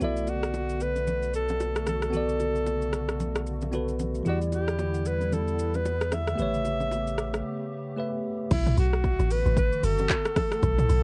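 A swung 113 BPM amapiano groove in B minor sets a deep, late-night mood, with an overdriven deep house kit of kick, claps, metallic hats, rim clicks, shaker, toms and crash, roughened by 12-bit sampler grit, plus close, dry congas and bongos in the background. A breathy, whispered alto saxophone carries an intimate melody over bell-like tine electric piano and a hollow, flute-like pad with ensemble chorus, moving through Bm7, Em7 and A9, while a punchy sine sub bass with a pitch-drop attack holds the low end until 7.4 seconds. After a short break, the drop at 8.5 seconds brings in a round, dark log drum bass up front as the electric piano falls away, all coloured by light reverb and worn, warbling cassette-tape pitch drift in this fragment of a longer piece.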